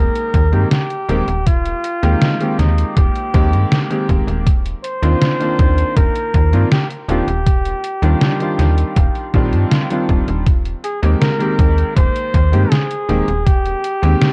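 The slap-like FM bass sits up front with a snappy, metallic attack that decays, anchoring this woozy, nostalgic vaporwave excerpt cut from a longer piece, while an electronic kick drum thumps alongside a detuned 8-bit drum machine whose hi-hat and medium-tuned snare sound tape-warm and re-recorded in a small room. A jazz-style flugelhorn carries the melody with scooped notes, roughened by 12-bit sampler grit and tape echo, over a vintage electric grand piano bathed in lush chorus that moves from Abmaj9/Eb to Cm11/Eb at 4.5 seconds and back at 10.5 seconds. The mix is dry, with a cassette-tape character throughout.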